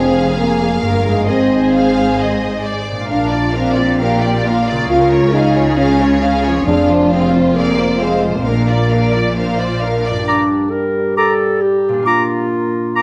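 Set in a wet recital-hall reverb, this heroic, soaring film-score passage is cut from a longer piece and moves at 134 BPM in Bb mixolydian. A lush violin section carries the melody over a second violin line with soft attacks and portamento, while rich violas, a focused cello section and distant double basses fill the lower strings. A tight French horn section holds sustained chords, a ringing harp plays arpeggios in the background, and round timpani sound briefly at 6.7 seconds. At 10.3 seconds the strings give way to a clear oboe, an up-front mellow clarinet and an airy silver flute.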